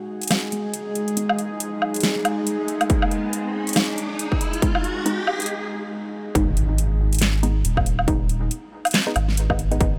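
A tense, string-like drone with vibrato and its own reverb sits up front from the start, holding sustained chords under a brooding, cavernous build-up of deep dubstep with a half-time, swung feel, cut from a longer piece. A metallic-hatted drum kit with a huge snare, handclaps and woodblock enters early alongside muted, detuned chord stabs treated with phaser and dub echo, while a distorted kick joins at 2.9 seconds and an electronic riser climbs toward a short break. At the drop at 6.4 seconds the drone has just ended, a round, soft sub bass arrives up front and an impact lands.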